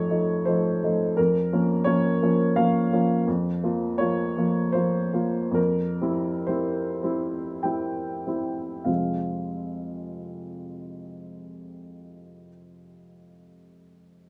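In a rubato 3/4 that drifts between 47 and 87 BPM and slows from 2.2 to 8.9 seconds, this brooding, passionate romantic character piece for solo upright piano in F minor moves from F7 through Bbm/F and C7/F to settle on Fm as a new section begins at 8.9 seconds, the woody, slightly detuned, vintage piano sitting up front across its F2 to G5 range in light reverb in this short excerpt cut from a longer piece.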